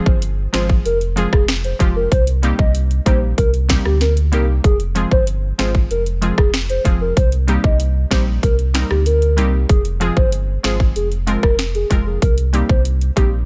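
An up-front electronic island pop drum kit of tight kick, sharp snare, metallic hi-hat, rim click and finger snaps drives this tough, bouncy dancehall cut from a longer piece, with a deep sub bass with octave underneath, a glassy, chorused wavetable pluck accompanying over Fm and Cm7, and a hollow, woody clarinet-like synth lead with vibrato carrying the melody through chorus and phaser, inside a digital ambience.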